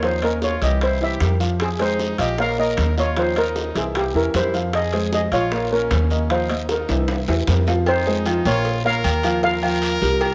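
A straight 4/4 groove at 153 BPM in F minor, built from tight, high-tuned bongos and cowbell in the background, ringing metal-shell timbales and agogo bells, a raspy, close guiro and a woody, thumpy pizzicato upright bass up front, drives this nostalgic Cuban son and guajira passage, where a shimmering steel pan carries the melody over a bright trumpet second line with light vibrato and scooped notes and a dark, worn baby grand piano playing mellow arpeggios with audible action noise, under a moderate plate reverb, with a drum fill from 6.9 to 7.9 seconds leading into a new section.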